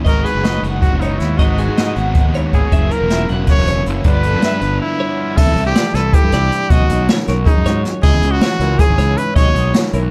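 Math rock and midwest emo in a lopsided 7/8, this short excerpt pairs a bright, wistful mood with a dark production and light reverb. A close-miked trumpet with vibrato carries the pop-style solo melody, while a clean twelve-string electric guitar spins twangy, compressed arpeggios touched with tremolo. Underneath, a fingered clean electric guitar sits in the background with accompaniment, and a double-tracked overdriven guitar plays a biting riff until it stops at 5.4 seconds, just after a short break that begins at 4.8 seconds. A growly fuzz bass with overdrive adds punch at the bottom, and a jazz drum kit played with brushes sounds roomy and distant yet up front, with dusky cymbals, a medium-tuned snare and a boomy kick. The chords move from G#m7 through F#7 and G9 before the second half drifts among C69, B69 and C#m.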